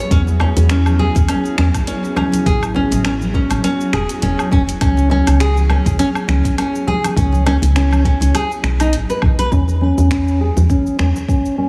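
An earthy, hypnotic slice of organic downtempo, cut from a longer piece, moves in 4/4 with a gentle swing on the sixteenths. Up front, a fingerpicked nylon-string guitar plays full-bodied arpeggios with audible finger squeak, softened by a low-pass filter and trailed by digital delay, and a filter sweep colours it from 9.5 seconds until it finishes at 11.7 seconds. Beneath it, a woody, round FM bass sits dark and close with sidechain pumping, alongside the deep electronic kick. The drum kit adds finger snaps, metallic hi-hat, shaker and woodblock in a small room, while very quiet congas ring close and dry. An ethereal, airy pad holds detuned, chorused chords in the background with sidechain pumping until it stops at 9.5 seconds, over a progression from E6 through Amaj7 and C#m7 that arrives at E5. The whole mix carries a heavily compressed, radio-like sound with light small-room reverb.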